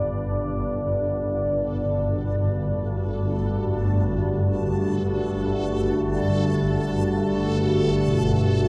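A deep, moody pad and a swarming, detuned drone open this ominous dark ambient fragment together, both sitting up front in free time. The pad's sawtooth and sine layers, thickened with a sub octave, wave-folding, ring modulation and chorus, hold sustained chords that move from G to D/G at 0.8 seconds, while the low drone churns with a tense, granular, evolving grain beneath it. At 1.6 seconds a reversed, dreamy texture rises high above, its bright triangle tone swelling in with a soft attack. A bronze singing bowl enters in the background at 6.3 seconds, its metallic ring beating slowly under the sustained layers as it plays meditative arpeggios. The whole piece is soaked in a cavernous cathedral reverb and carries the warble and pitch drift of worn cassette tape, leaving an unsettling atmosphere.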